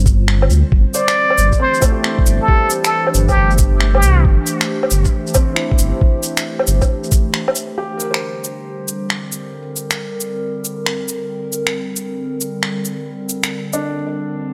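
Set in a lightly reverberant room, this melancholic, wistful future garage excerpt layers a warbling, nostalgic tape-like pad with phaser and sidechain pumping over a rumbling, detuned saw bass and a muffled, thumpy kick, both gone by 7.2 seconds, while overdriven shaker, finger snaps, woodblock and cabasa carry on, a felt-muted upright piano with audible action noise drifts through tape echo, and a plunger-muted trumpet with scooped notes and 12-bit grit plays a short jazz-style solo from 0.9 to 4.3 seconds.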